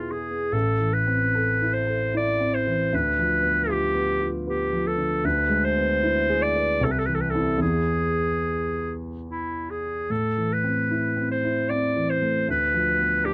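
A bright, vintage-toned clarinet sings a melancholic, solemn melody over a dark, mellow grand piano with long sustain in this romantic classical fragment, unfolding in a rubato three-beat feel and captured with close, detailed, nearly dry miking that keeps both players up front.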